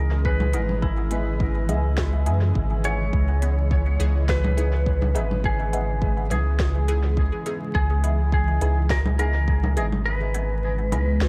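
A lightly swung 104 BPM groove in 4/4 anchors this meditative, spacious ambient dub excerpt in C# minor, where a deep electronic kick sits in the background from 0.2 seconds and drops out at 10.1 seconds, while an organic electronic kit adds congas, crisp hats and a woody snare with dub echo. A round, mellow sub bass sits up front beneath a cloudy, detuned granular pad holding a C#m9 chord in its own reverb, and muted, nasal filtered chord stabs flicker through phaser, analog chorus and dub echo. Over this, a clean, twangy lap steel carries the slide melody with dub echo, all set in a dry space with vinyl crackle.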